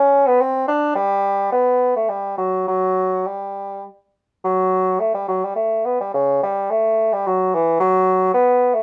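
This classical, baroque-style fantasia for unaccompanied bassoon has a flowing, radiant mood, set in G major at 105 BPM in 3/4. The time is elastic, with uneven beats and rubato giving the line a free, speaking quality. The bassoon plays alone from 0.0 to 8.8 seconds, moving between C#3 and D4 with a punchy, up-front tone coloured by vibrato. Light reverb lends the solo a roomy glow. The opening phrase returns at 4.4 seconds, and the passage is cut from a longer piece.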